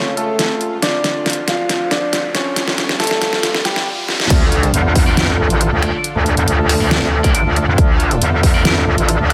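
Heavy wobble dubstep in D harmonic minor at 138 BPM with a half-time feel, this menacing excerpt from a longer piece opens with a build-up. A clear concert grand piano with long sustain carries the melody through a dub echo over a lush, detuned supersaw pad that pumps against the sidechain. An overdriven dubstep kit with a deep snare, hi-hat, finger snaps and crash cymbal plays a drum fill under a filter sweep, while a very quiet riser and impact sit beneath. At 4.3 seconds the drop hits on a D minor chord, bringing in an aggressive, metallic wobble bass, saturated and thickened with chorus, alongside a punchy, overdriven electronic kick, both up front. From 5.1 seconds a scooped, double-tracked high-gain guitar adds distorted stabs in the background, trailed by dub echo, and the whole track carries light reverb and a high-pass filter.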